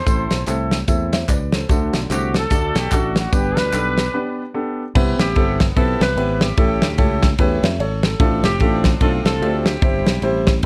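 A growling trumpet with a raspy, scooped jazz-style solo voice opens this uptempo gospel excerpt, sounding distant and roomy through a slapback echo before it drops out at 4.4 seconds. Alongside it, a tight, clear saxophone section with vintage vibrato carries the melody through 10.5 seconds. Underneath, a baby grand piano with audible action noise sits up front in the accompaniment, while a growly fingered electric bass and a punchy acoustic drum kit with bright cymbals drive a swung 148 BPM groove in 4/4 and C major. Tambourine and group handclaps add a small-room sparkle until a break at 4.1 seconds, after which the harmony moves through richer chords such as Cmaj7, A7 and Dm7. The dark production keeps reverb minimal, and the overall mood is uplifting and soulful.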